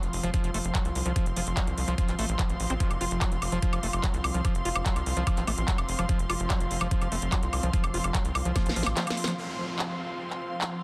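This short psychedelic trance excerpt drives along at 146 BPM in a straight 4/4, with a knocking electronic kick up front from 0.3 seconds, layered over a drum kit of cracking snare, metallic hats, handclaps and woodblock that carries a tape-warm, small-room character. Beneath it, a tight, punchy sequencer bass in sawtooth and square tones plucks out the low end, while a squelchy, gritty acid bass riff with a resonant filter sweep and tape echo pumps against the kick. A dark, woody string section with light vibrato holds a bowed texture through the middle register, and an evolving, detuned wavetable pad sits bright in the background on sustained chords, breathing with chorus, reverb and sidechain pumping. A brief electronic zap flickers at 2.7 seconds, and the kick drops out at 8.6 seconds as a drum fill takes over, giving way to a downlifter and a filter sweep on the pad. The mood is hypnotic and alien, wrapped in a dense, heavily limited modern master.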